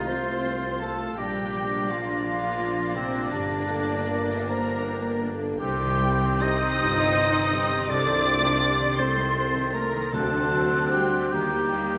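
A slow, rubato 6/8 at 47-57 BPM in dotted quarters carries this elegiac, solemn classical excerpt, where a dark, veiled section of muted violins sings the melody over a second line of background muted violins, a shadowy cor anglais, an airy silver flute high above and a vintage-toned clarinet. Beneath them, a rich muted viola section accompanies, a mellow French horn section holds sustained chords, a ringing concert harp spins fingerpicked arpeggios, and close, muted cellos and double basses join a present tuba on the bass line. Soft-mallet timpani with round calf heads enter very quietly at 10.1 s, all within a reverberant concert-hall space.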